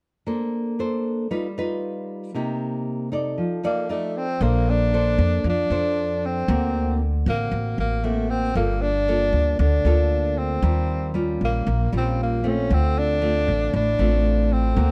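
A fingerpicked nylon-string guitar opens this sunny, romantic bossa nova, its deep classical tone carrying faint finger squeaks through lush chords such as Bbmaj9 and Gaug7. A mellow tenor saxophone enters as the up-front jazz soloist at 3.7 seconds, with subtone, vibrato and scooped notes. At 4.4 seconds a woody, thumpy pizzicato upright bass joins, and the whole passage sits in a dark production with light reverb.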